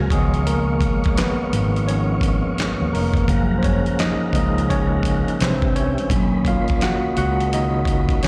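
An overdriven tine electric piano leads this smooth, introspective neo-soul and R&B excerpt at 85 BPM. Its barky, up-front tone carries a solo across the whole 8.3 seconds, shaped by fast tremolo and slapback echo through a combo amp. Beneath it, a clean tonewheel organ holds sustained chords with key click, a slow rotary speaker and chorus vibrato. A fretless electric bass adds a bright, growly, amped low end with subtle chorus before stopping at 8.1 seconds. A dusty sampler-style drum kit enters at 0.1 seconds with a thumpy kick, a medium-tuned snare, hi-hat and handclaps, sounding compressed and gritty, as if re-recorded in a small room. The 4/4 groove swings its sixteenths while the harmony moves through Db9, Gbmaj9, Cmaj9 and Bmaj9, all heard as a live gig through a venue's PA with a touch of recital hall reverb.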